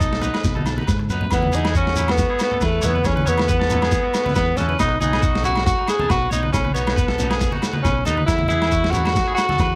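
Highlife guitar band music in E major, joyful at 138 BPM with swung sixteenths, in which a clear, jazz-style tenor saxophone with light vibrato and scooped notes leads up front over chords moving between B and Esus2. A bright, clean twangy guitar with phaser sits in the background while a slightly broken-up guitar picks arpeggios through subtle chorus and analog delay, above a round fingered electric bass. A gritty, pitched-down boom bap drum kit with a thumpy kick and high-tuned snare plays a fill from 1.0 to 1.3 seconds, alongside grainy shekere, distant low-tuned congas and ringing agogo bells, all within a small room ambience.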